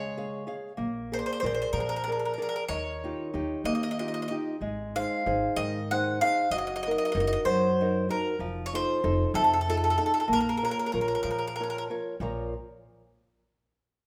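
Bathed in the lush reverb of a recital hall, this sunny, romantic Italian folk serenade in Bb minor sways in 6/8 at 63 BPM, with an up-front, round-toned, double-strung mandolin picking the melody until 11.8 s over a small, fingerpicked nylon-string guitar, also close in the mix, and a woody, thumpy pizzicato upright bass, both of which carry on to 12.5 s.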